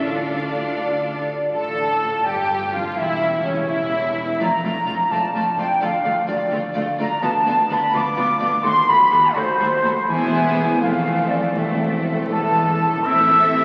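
In a 6/8 metre, this stormy, restless excerpt from a fast romantic orchestral movement sets lush, bowed violin, viola, cello and double bass sections, with a second violin line, beneath an airy, bright flute ensemble that sits up front from 0.8 seconds, while a ringing concert harp plays arpeggios in the background. Very quiet timpani enter at 10.1 seconds and play a brief fill from 12.3 seconds, a distant solo oboe joins at 12.3 seconds, and a dark French horn section adds sustained chords in the final moment. A wet church reverb and the crackle of a very old 78 rpm record give the recording an aged sound.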